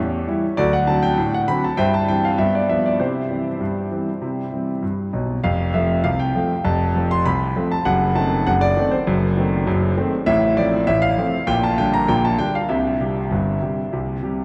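Ragtime piano in a jaunty, lively 2/4 at 99 BPM, this short cut from a longer piece features a solo concert grand with deep bass, smooth vintage tone and long sustain, sitting up front in a vast, echoing cathedral reverb, ranging from F1 to C6 as its chords move from A7 through C into a second part that settles in F major from 10.3 s.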